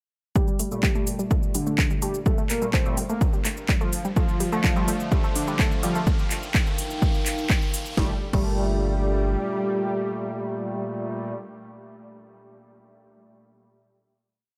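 A hypnotic, dramatic melodic techno piece in G minor at 126 BPM opens at 0.4 seconds with a punchy, overdriven four-on-the-floor kick and a house kit of cracking snare, metallic hats, claps, shaker and crash, under a round, deep rolling sixteenth-note analog bass. Above them a fat, wave-folded analog lead plays a mellow repeating riff with vibrato, doubled an octave lower by a smooth supersaw in the background, while a lush detuned pluck cycles a 3-step loop that drifts against the bar and an edgy, nasal sync-sweep polysynth adds sparse echoing chord stabs, all pumping with the sidechain as filter sweeps open through the build. A moody, dark pad with a moving notch fades in at 3.2 seconds and an electronic riser lifts toward 8.0 seconds, where the track settles on a final sustained Gmadd9 chord in a digital ambience, with the drums dropping away shortly after at 8.5 seconds.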